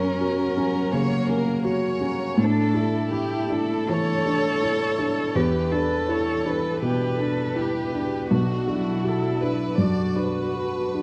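Reflective and fragile, this short excerpt of neoclassical piano and strings moves at 82 BPM in 4/4 with a rubato feel, set in B minor. A felt-muted upright piano carries the accompaniment up front, its boxy, short-sustained tone and audible action noise giving the sound an intimate, close-to-the-keys quality. A chamber violin section sings the melody with light vibrato and a soft, sul tasto attack, while a single dark cello adds a second line beneath it, also bowed sul tasto with vibrato. A very quiet hand-pumped harmonium holds reedy, breathing chords in the background. All four parts play throughout the 11 seconds, and the harmony drifts from F# through Asus4 and Em7 to Bm7. A moderate scoring-stage reverb and a dark, warm production soften the edges and keep the mood hushed.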